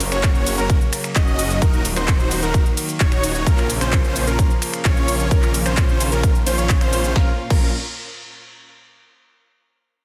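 A punchy, up-front electronic kick and a big-room dance kit of crisp hats, snare, handclaps, finger snaps, shaker, ride and crash drive this powerful, emotional festival progressive house drop at 130 BPM in Bb minor, alongside a thick, chorused detuned saw bass, huge, bright supersaw chords and a bold, mellow unison lead playing arpeggios (the chords and lead both carrying tape echo and sidechain pumping), while a soft, distant chamber string section sustains chords in the background over a Gb, Ebm, Bbm progression, all in a dense, heavily limited mix with little reverb.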